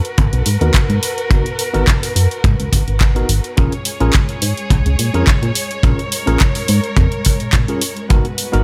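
A swung groove at 106 BPM drives this cosmic, groovy nu-disco excerpt in G# dorian, cut from a longer piece. An overdriven house kit of layered handclaps and bright hi-hats opens the excerpt, joined at 0.2 seconds by a tight, gritty kick that sits up front, while a glossy, chorused synth bass with a fast plucky attack and a retro pulse-wave edge carries the low end from G#1 to A#2. Beneath it, a dark chamber string section holds soft, bowed chords with expressive vibrato and sidechain pumping. A worn, slightly out-of-tune tine electric piano enters at 0.6 seconds, lightly overdriven and delayed, with a filter sweep running across its whole span. The harmony moves from G#m9 to A#m7 at 3.6 seconds and back to G#m9 at 8.1 seconds, all bathed in a generous studio reverb.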